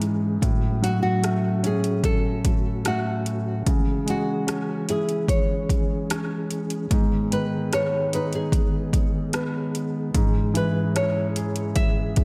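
Longing and emotional, this slow pop ballad excerpt in C# minor at 74 BPM sets a clear, polished baby grand piano and a soft, flute-like tonewheel organ with chorus vibrato over a punchy, overdriven electronic drum kit of kick, metallic hi-hat and rim click sitting up front, while a dark, full-bodied fingerpicked nylon-string guitar enters at 0.8 seconds with the melody through a diffuse ambient delay, all bathed in a dreamy, reverb-soaked hall.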